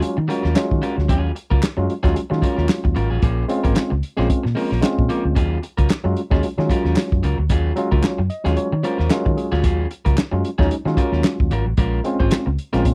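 A driving, sly funk groove with a 16th-note swing, cut from a longer piece and recorded close and dry in a 1970s studio style. A soul drum kit sits up front with a muffled, rolled-off top, a tight kick, a medium-tuned snare and hi-hat. A vintage fingered electric bass, foam-muted and round, anchors the low end with a dark, punchy tone. A picked electric guitar at the edge of break-up fills in the accompaniment with a compressed grit. A worn, slightly out-of-tune tine electric piano, lightly overdriven through its built-in speakers, punches out stabs up front over Ebm11 and Bbm7 chords and plays a fill at 8.0 seconds. A crisp group handclap enters at 0.6 seconds and sits low in the mix.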